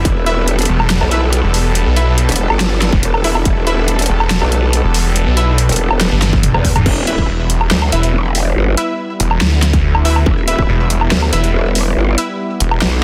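A dense, heavily limited modern master with light reverb carries this chaotic, heavy wobble dubstep excerpt in E minor, set at 141 BPM in a half-time 4/4 feel and cut from a longer drop that starts over at 6.9 seconds after a drum fill. Up front, a snarling distorted saw bass and a saturated, chorused growl bass share the low end, while a dubstep drum kit with a huge snare, bright hats, toms and woodblock in small room ambience plays beside a tape-warm electronic kick that comes in stretches, most fully from 6.3 to 10.7 seconds. Bold orchestra-hit-like synth stabs with delay and built-in reverb punch above, and a lush supersaw pad with vintage 12-bit sampler grit, sidechain pumping and a low-pass filter holds sustained chords in the background.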